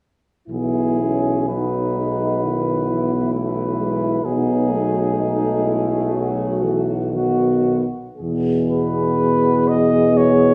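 Rubato in a slow 4/4 at 53-66 BPM, this serene, hymn-like classical passage for brass band in E major places a mellow cornet melody with light vibrato up front over a vintage-toned French horn section on the second line, a warm trombone section and a clear, distant solo trombone in accompaniment, and an up-front tuba bass with vibrato, all sounding from 0.5 to 10.5 s as the harmony moves from E/B to B7 and comes to rest on E at 8.2 s, bathed in wet recital-hall reverb.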